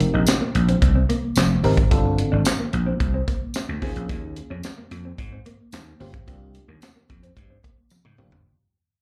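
This early-eighties boogie funk excerpt has a late-night, funky mood and a straight groove, and it is heard as a live gig through the venue's PA with light club reverb. Up front, a growly, punchy vintage slap bass sits beside a tight, dry drum kit with a high-tuned snare, a tight kick, hi-hat, toms and handclaps, its top end rolled off. A soft, round FM electric piano supplies the accompaniment, with a fast attack, a decaying tail and a faint noise layer, coloured by chorus and slapback echo. A clean, compressed, fingered electric guitar plays a riff alongside it with subtle chorus and the same slapback echo, while a jingly tambourine enters at 0.3 seconds. The harmony moves through F9sus4, G9sus4, Eb9sus4 and C9sus4 as the whole clip fades out, and a drum fill at 7.9 seconds closes this fragment of a longer piece.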